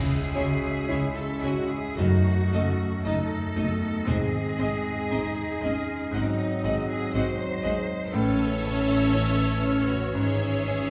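Opening on a clear, up-front grand piano carrying the melody over bright flutes, dark clarinet, mellow bassoon, warm distant French horns, very quiet trumpet stabs, and lush cellos, with chamber violins, violas, and double basses entering at 0.4 seconds, this tragic, passionate classical excerpt in C# minor moves with a slow rubato feel around 54-62 BPM through a wet recital-hall reverb, with very quiet studio violins joining at 0.3 seconds and a brief, dry hard-mallet timpani touch from 4.1 to 5.6 seconds.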